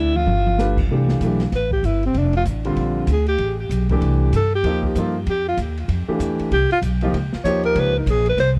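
Small-group swing and bop jazz at 192 BPM with a 61% swing feel, playful and warm in a dry, close 1970s-style studio sound, cut from a longer piece. A drum fill opens on an acoustic kit with dark cymbals and a boomy kick, while a woody, thumpy pizzicato upright bass sits up front and a natural-sounding concert grand piano with deep bass comps from 0.6 s. At 0.9 s the breathy alto saxophone begins a whispered, intimate solo with vibrato and tape echo over chords such as Cmaj13, Am9 and Dbadd9.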